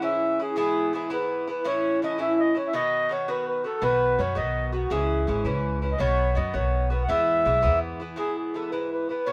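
This lively, cheerful Celtic folk jig in E major moves at 110 BPM in dotted quarters, in a straight 6/8, and is cut from a longer piece. A mellow accordion carries the melody up front, its single-reed voice reedy and round, close-miked and full. Beneath it, an Irish bouzouki supplies picked accompaniment throughout, its double strings giving a metallic, acoustic ring. An upright bass enters at 3.8 seconds and drops out at 8.1 seconds, adding woody, thumpy pizzicato notes from gut strings with a dark tone. The chords move through C#m, E, A and B, and a new section begins at 8.2 seconds. Light reverb gives the close-miked sound a touch of space.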